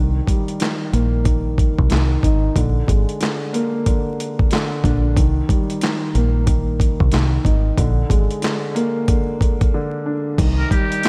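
Gritty, overdriven sampler-style drums with a thumpy kick, handclaps and swung 16ths drive this moody, tough boom-bap hip-hop excerpt at 92 BPM in C minor, over a round, foam-muted fingered electric bass and a dark, intimate grand piano with audible action noise and cassette-tape colour cycling between Cm7 and Bb7, with a short break at 9.7 seconds before a buzzy, metal-muted jazz trumpet enters at 10.6 seconds, the whole set in light reverb and vinyl crackle.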